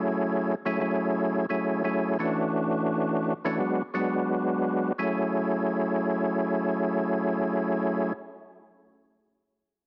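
A swung sixteenth-note hip hop groove at 86 BPM in 4/4 sets a tough, reflective mood in F# minor, carried entirely by a percussive tonewheel organ placed up front, its full, lightly overdriven tone colored by third-harmonic percussion, chorus vibrato, a stopped rotary speaker and a cassette-tape grain shaped by high- and low-pass filtering. The organ moves through F#m7, Dmaj7 and G#m7b5 before returning to F#m7 at 5.0 s as a new section begins, staying between E3 and G#4. Light reverb and small-room ambience sit under a heavily compressed, radio-like sound in this brief clip cut from a longer piece.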